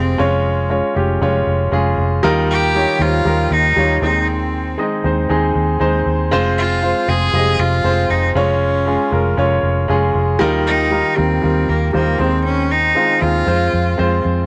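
Dramatic and bittersweet, this piano-driven pop fragment in straight 4/4 sets a clear, earthy cello melody, bowed by one player with light vibrato, over a polished baby grand piano and a dark, round, punchy foam-muted electric bass, all three up front in a small room with light reverb as the chords cycle twice from Db/F through Ebadd9 and Ab/Eb to Fm.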